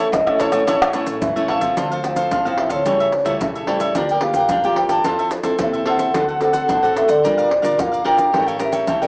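Bittersweet and nostalgic, this samba-and-choro excerpt has an airy clay alto ocarina carrying the melody with vibrato over a fingerpicked, up-front nylon-string guitar and a crisp, bright cavaquinho, both touched by cassette tape and plate reverb, while a woody pizzicato upright bass sits in the background and soft-handed maracas, deep surdo, pandeiro and tamborim enter at 0.1 seconds and play a fill from 0.7 to 1.8 seconds before the chords settle into a minor progression, all heard in a small, wet booth with the small-speaker character of a home cassette recording.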